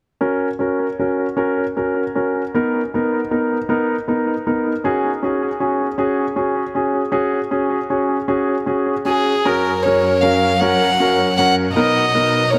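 A clear concert grand piano opens at 0.2 seconds, laying down a swaying, heartfelt pop accompaniment in a gentle 6/8 lilt, its up-front sound carrying audible action noise, deep bass and long sustain through an analog delay. The harmony moves through F#, Bmaj7 and C#sus4, giving the opening a tender, unresolved feel. At 9.1 seconds a single violin enters with the melody, close and intimate, its soft attack, light vibrato and airy sul tasto bowing also passing through an analog delay. A lush studio string section follows at 9.5 seconds with smooth, sustained bowed chords that support the solo line as the harmony returns to F# and Bmaj7. Light reverb and an echo-heavy mix give this short passage, cut from a longer piece, a soft, lingering atmosphere.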